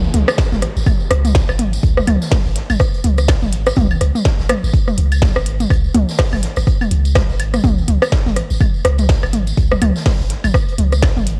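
The recording sits in a digital ambience, with transformer saturation and a cassette-tape grain across the whole mix, giving this cool, clinical minimal techno fragment a faintly worn finish. Up front, an electronic kick drum thuds deep and tape-softened from 0.4 seconds. Beside it, a punchy sine sub bass with a pitch-drop attack and sustained body pumps against a sidechain. A layered garage drum kit of claves, rim clicks and toms sits forward through an analog delay. A minimal click drum kit adds a tiny snare and clicky hats, re-recorded in a small room, over a 58% swing on the 16ths. Farther back, a distant, roomy big-band drum kit with a medium-tuned snare and rolled-off top has its hats pumping and filtered thin, while a jingly acoustic tambourine rings from a large room and an electronic downlifter sits in the background until 2.8 seconds.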